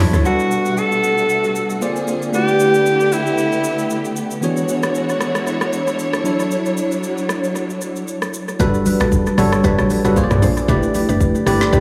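An echo-heavy mix with light reverb and small room ambience frames this relaxed, soulful amapiano cut at 115 BPM, where a bell-like, up-front tine electric piano and a lush, bowed string section with sidechain pumping carry chords such as Gmaj9, Bb9 and E13 under a breathy, intimate alto saxophone melody with scooped notes and delay that sings until 4.2 seconds. An afro-pop drum kit with a deep kick, woody snare and crisp hats swings on the sixteenths throughout, its delay adding trails. At the drop at 8.6 seconds the strings fall away as a punchy, decaying log drum bass returns and a round, chorused synth pluck enters in the background, with very quiet, thick-skinned congas joining in moments later.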